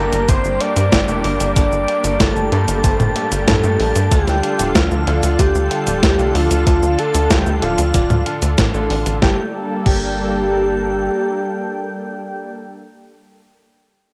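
Synthwave at 94 BPM in G minor, nostalgic and moody, where a round, full-bodied octave-layered synth lead carries the melody with phaser and analog delay over an airy, dreamy second lead, a thick, warbling unison pad with 12-bit sampler grit and sidechain pumping, clangy background electric grand piano stabs, a punchy sawtooth sequencer bass that stops at 11.1 seconds, and a sampler-style drum machine with a thumpy electronic kick that both drop out at 10.1 seconds, all of it colored by cassette tape and light reverb in this short cut from a longer piece.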